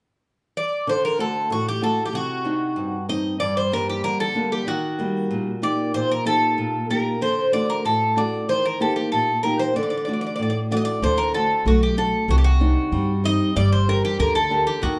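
Brooding and cool, this excerpt of Greek folk in 2/4 at 94 BPM in D phrygian dominant opens with a metallic, picked bouzouki carrying the melody up front from 0.6 seconds, joined at 0.9 seconds by a small, fingerpicked nylon-string guitar outlining chords such as D, Cmadd9, Gm and Eb, before a woody, thumpy pizzicato upright bass enters at 11.0 seconds as the phrase repeats, all captured as a band playing live in one room with a wet large studio reverb.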